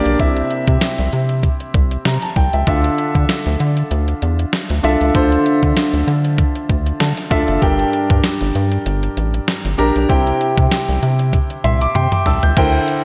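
A lightly swung 16th-note groove at 97 BPM in 4/4 drives this moody, dramatic 1980s-style pop passage, cut from a longer piece. A clean 12-bit drum machine with a thumpy kick and fat snare sits up front beside a rubbery, hollow square-wave bass, while a clear concert grand piano with slapback echo moves through C, Dmadd9 and Gm, adds fills at 6.7 seconds and 11.3 seconds (the second alongside a drum fill), and is bathed with the other parts in a lush hall reverb for a big arena sound.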